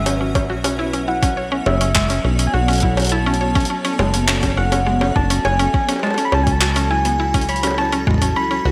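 Bright, 1980s-style digital production sits in a lush hall reverb, lending this eerie, intricate IDM excerpt a gleaming sheen. A rubbery, tube-saturated acid bass sits up front beneath a blurred, evolving granular pad, a faint pulsing gated texture, and woody mallet-like synth arpeggios, while a gentle, keys-like FM lead with vibrato carries the melody over Bm11 and F#m11 chords. A gritty, pitched-up jungle sampler kit of bongos, handclaps and hi-hat, overdriven and compressed, runs alongside a deep electronic kick.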